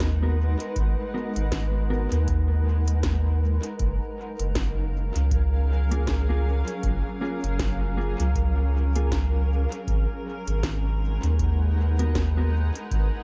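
From its first moment, this meditative, spacious ambient dub excerpt at 79 BPM in G# dorian, with swung sixteenths, sets a blurred, evolving granular cloud pad holding sustained chords that move from G#m7 to F#maj9 at 3.8 seconds and back at 9.9 seconds over a round, up-front soft sub bass, a dry, deep analog kick in the background, and an overdriven electronic kit of woody snare and smooth hi-hats thrown into dub echo, while a dark, clean, fingered electric guitar adds compressed stabs through its own dub echo until 12.5 seconds, the mix leaning heavily on echo with little reverb.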